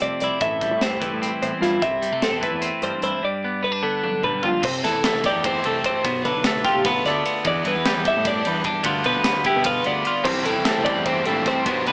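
Through a small-speaker sound with moderate studio reverb, this wistful, playful math rock and midwest emo excerpt moves in 7/8 at 299 BPM in C major, with a twangy twelve-string electric guitar picking accompaniment beneath a second, up-front twelve-string weaving clean arpeggios, a growling overdriven picked bass, and a crisp, gritty fusion drum kit with a high-tuned snare and punchy kick that plays a fill at 4.0 seconds, before a bright, double-tracked overdriven guitar riff enters at 10.2 seconds over chords such as Am7, C6 and G9/B.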